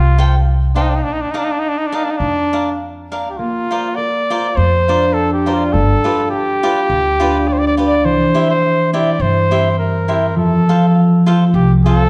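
A clear, classical-style solo trumpet sings the melody up front in this romantic, festive mariachi excerpt in Bb major, moving at 103 BPM with a gentle swing and rubato feel. A woody pizzicato upright bass anchors the low end alongside crisp picked cavaquinho accompaniment, and a ringing, thumb-plucked concert harp enters with arpeggios at 3.4 seconds. The dark production sits in a lush recital hall reverb that gives the ensemble a spacious glow.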